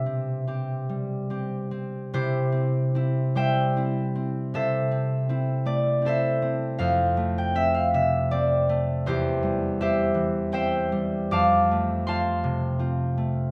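In a rubato 3/4 at roughly 71-82 BPM, this peaceful, serene classical fragment cut from a longer piece features a solo concert harp, warm, fingerpicked and ringing, placed up front with close, detailed microphones as it spans E2 to D6 and moves through C, Am/C, F and C/E in C major, framed by a moderate recital hall reverb.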